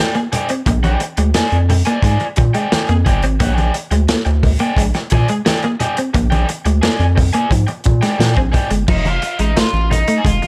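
This funk excerpt moves at 88 BPM in a straight 4/4, with an energetic, playful mood over a Bb13 chord that shifts to F7 at 8.9 seconds. A crunchy breakbeat drum kit sits up front, its punchy kick, medium-tuned snare, dark cymbals and hi-hat carrying a saturated, gritty character with a rolled-off top, while a round analog bass, deep and sine-like with a fast attack, anchors the low end from 0.7 seconds. A clean, compressed semi-hollow electric guitar picks out a hollow-bodied riff with a subtle chorus, as a raw garage guitar adds bright, overdriven accompaniment higher up. Low-tuned congas with a thin-skinned, vintage, band-limited tone tap along in the background. At 8.9 seconds an overdriven electric guitar solo breaks out, all within a noticeable studio ambience.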